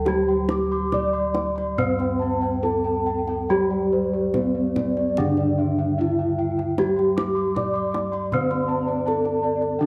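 A straight 4/4 pulse at 70-83 BPM carries this ceremonial, shimmering Javanese gamelan excerpt in D slendro, where an up-front, mellow bronze metallophone sings the melody over a lower metallophone accompaniment, bright horn-mallet metallophone arpeggios touched with slapback echo, airy bossed-gong arpeggios, a round, beating bossed-gong bass and tight kendang struck with soft hands from 0.1 to 9.7 seconds, all wrapped in a wet echo-chamber reverb with paired tuning giving the bronze its shimmering beats.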